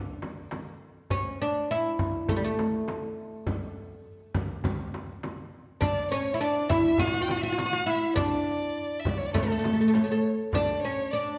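A straight, even four-beat pulse carries this stately Turkish makam ensemble piece, cut from a longer performance. The darbuka sets that pulse from the start: a crisp, metal-shelled drum struck with hard hands. Beside it a large frame drum adds a deep, resonant bottom until it drops out at 10.7 s. Up front, a bright, woody fretless oud plucked with a plectrum carries the melody on its doubled strings from the opening moment, ranging through its middle register. At 5.8 s a single bowed violin enters as a second voice above it, singing with vibrato, portamento and a smooth, expressive top, and lending the passage a warm glow. The whole ensemble sits in a generous recital-hall reverb that gives the playing a spacious, ceremonial air.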